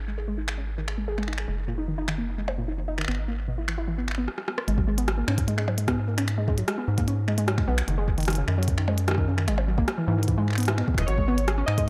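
IDM at 150 BPM in G# minor, this short excerpt from a longer piece has an eerie, cerebral mood and an echo-heavy mix with light reverb. A warbling, lo-fi pluck with a dusty, ring-modulated edge spins arpeggios from the start, treated with chorus and dub echo, while a rubbery, hollow square bass sits up front with a nasal, bouncy character. A glitchy drum kit of finger snaps, clicky hi-hats, percussion blips and rim clicks enters at 0.5 seconds, overdriven and set in a small room with dub echo. After a drum fill and a stop, an overdriven electronic kick with a soft body joins at 4.8 seconds as the harmony moves through G#m, D#m/F# and E/G#. Near the close, at 11.0 seconds, detuned, nostalgic synth keys slip in with a brief chorused melody high in the range.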